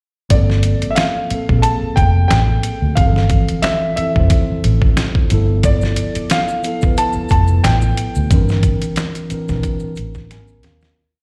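A laid-back, lightly swung neo-soul beat from a gritty, pitched-down sampler-style drum kit with a thumpy kick and snap-layered snare anchors this sultry, smooth R&B piece, as a dark, foam-muted fingered electric bass slides beneath mellow drop-2 tine electric piano chords and a clear, worn grand piano plays song-like motifs with slapback echo, while quiet maracas and finger snaps join in the background at 5.6 seconds before electric piano and drum fills close out the fade in a lightly reverberant live-hall sound.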